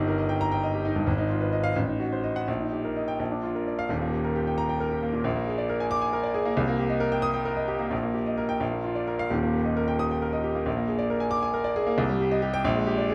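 Heroic and brilliant, this classical virtuoso piano study in 6/8 moves with rubato across a short span cut from a longer piece. A clear, polished grand piano plays alone from 0.0 to 13.1 s, spanning Eb1 to Eb6 with up-front presence, long sustain and audible action noise, while a moderate large-studio reverb gives it an intimate yet resonant space. A diminished-chord passage leads into a new section at 3.9 s, where the harmony circles between tonic, dominant seventh and minor chords before settling on a minor chord at 12.0 s.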